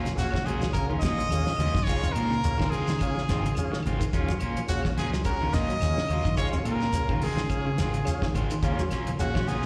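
A brilliant, forceful trumpet with light vibrato and slapback echo leads this hypnotic, driving afrobeat excerpt, riding over a deep, round dub bass, a cloth-damped thuddy drum kit with fat snare and gritty saturation, congas, grainy shekere and faint woody claves, while two slightly broken-up twangy electric guitars, one arpeggiating through lush chorus and one stabbing with slapback echo, join a smooth tonewheel organ on slow rotary speaker, all heard as a live gig through the venue's PA with recital hall reverb over an Ebm9 to Dbmaj9 vamp.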